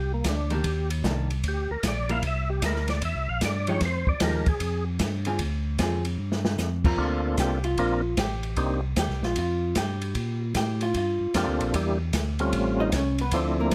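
The sound is close and detailed, with very little reverb, so the drums and both organs sit up front in a dry, intimate space. This smoky, soulful soul jazz organ trio excerpt swings in 4/4. A full, lightly overdriven percussive tonewheel organ carries the melody through the opening organ solo, its second-harmonic percussion and chorus vibrato turning through a slow rotary speaker, while a second tonewheel organ supplies a fat bass line with audible key click and the same slow rotary sound. An acoustic jazz kit in a small room brings dark cymbals, a medium-tuned snare and a boomy kick, with a drum fill just before the vintage hollow-body guitar, clean, picked and compressed, steps forward for its solo at 7.0 seconds. The lead organ drops away at 8.8 seconds and returns at 11.3 seconds alongside the guitar, as the harmony moves through rich extended chords toward an altered dominant at the end.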